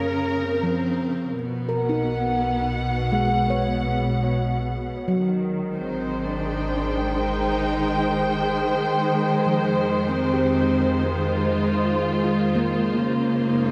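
Serene and warm, this ambient passage unfolds slowly, cut from a longer piece, as a muted, veiled string section holds lush, bowed chords up front while a close, woody cello sings a dark melody with tape echo, fading in from the start. Beneath them a deep, ominous drone rumbles with built-in reverb and a phaser, and from 0.6 seconds a ringing handpan adds meditative arpeggios with its own tape echo. At 6.8 seconds a very quiet analog drone joins with an evolving, chorused shimmer, all bathed in a dreamy plate reverb.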